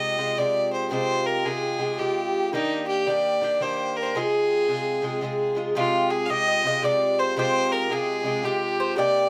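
A single bowed fiddle leads this spirited, dark and lively Celtic waltz, its earthy tone carrying a smooth top and light vibrato up front. Beside it, a picked Irish bouzouki with metallic double strings accompanies in F dorian at 112 BPM in 3/4 with a swung lilt, moving through Fmadd9, Ebmaj7 and Fm. At 5.8 seconds a round, picked mandolin slips in behind as a second line, all set in light reverb and close, detailed miking in a short excerpt from a longer piece.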